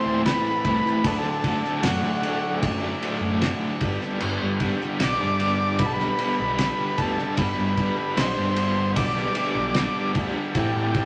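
A straight 4/4 groove from a muffled, cloth-damped drum kit, with its fat snare, tight kick and dark crash and ride cymbals, sets a slow, trippy psychedelic rock pulse in this short cut from a longer piece, moving through Am, D, Gadd9 and Am7. Up front, a double-tracked, overdriven semi-hollow guitar plays a riff through tremolo, while a round, overdriven electric bass holds the low end. A buzzy vintage combo organ with light vibrato carries the mysterious melody over a very quiet, overdriven second organ sustaining chords, all set in a wet club reverb.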